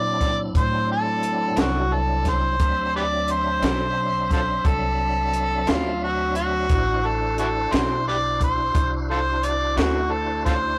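Rollicking and swaggering, this slow 12/8 blues in D mixolydian at 58 BPM puts a gritty, overdriven harmonica up front, with tongue slaps and scooped notes, over full tonewheel organ chords through a slow rotary speaker, a woody pizzicato upright bass, a compact cocktail kit with a high-tuned snare and punchy kick, and, from 1.6 seconds, a slightly broken-up electric guitar with harmonic tremolo in the background, all caught in a rough rehearsal-room recording with saturated warmth.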